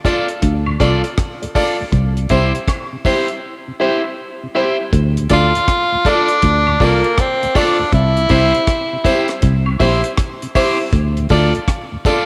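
Roots reggae with a hypnotic, meditative pull, this excerpt from a longer piece rests on a swung sixteenth-note feel over a home-recorded cassette sound with light reverb and a small-room air. A deep, dry drum kit with a tight kick sits up front with hi-hat and rim click, joined by a round, dark fingered bass, foam-muted and amped, while a distant tambourine and woodblock part adds shaker and group handclap from the background. A woody, slightly detuned upright piano plays stabs alongside a twangy guitar at the edge of break-up, its bright tone carrying spring reverb and tape echo, and a very quiet hollow-body guitar plays a low riff beneath them. A mellow tonewheel organ with slow rotary chorus vibrato hovers faintly underneath as accompaniment. After a break from 3.4 to 4.9 seconds, a breathy, whispered tenor saxophone steps up front with light vibrato and a soft attack for an intimate solo between 5.3 and 9.4 seconds.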